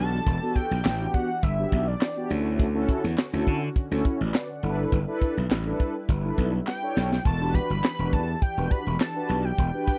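A growly, overdriven slap bass sits up front in this slick, danceable early-eighties boogie funk excerpt at 103 BPM in E dorian, driven by a tight, dry funk drum kit with a high-tuned snare and a fill at 6.7 seconds, a hollow group handclap, round, brassy synth brass with chorus, a very quiet, smooth analog pad holding sustained chords, and a fat, nasal analog lead with portamento that carries the melody at the start and returns at 6.7 seconds, all over an Em7, Dmaj7, G6 progression in a close, dry studio sound.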